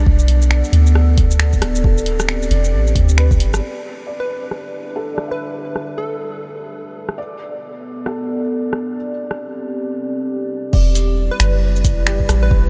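A felt-muted upright piano and a dark, detuned analog pad with chorus and phaser open this ghostly, nocturnal future garage excerpt in E minor at 135 BPM, swung on the sixteenths and tuned to A4 = 444 Hz, while a soft, round 808-style bass, a deep electronic kick and a tape-warm deep house kit of crash, finger snaps, hi-hat, rim click and shaker settle into the groove, with sidechain pumping on the piano, pad and bass. At 3.6 s the bass and kick fall away as the pad takes a filter sweep over Em7, Bm7 and D7sus4, and a punchy, catchy unison lead with diffuse ambient delay enters at 4.2 s. The bass and kick return at 10.7 s, and the lead comes back briefly over the mellow, intimate piano, all under a light reverb.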